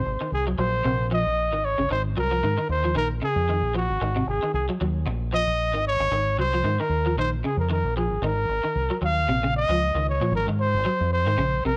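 A swung sixteenth-note afrobeat groove in 4/4 carries this defiant, intense excerpt, where a breathy, whispered trumpet sings a dark, intimate solo with vibrato and scooped notes up front, a deep, round fingered electric bass holds the low end, and a twangy, slightly broken-up electric guitar picks arpeggios through an ensemble chorus, all within a small room's light reverb as the chords shift between Bb minor and Ab shapes.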